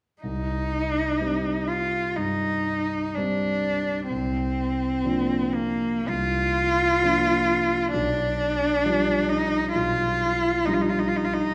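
A bowed cello and a concert grand piano begin together at 0.2 s, opening a solemn, yearning romantic classical duo. The single cello carries the melody up front in a rich, focused voice with vibrato, ranging from Bb3 to F4. Beneath it, the piano plays a dark, mellow accompaniment with deep bass, also placed close and reaching down to B1. The music moves with a flexible rubato in 4/4, and the harmony passes from Cm through Bb/C to G7/B at 7.9 s. A reverberant recital hall surrounds both instruments, and the excerpt, tuned to A4 = 438 Hz, breaks off at 11.5 s.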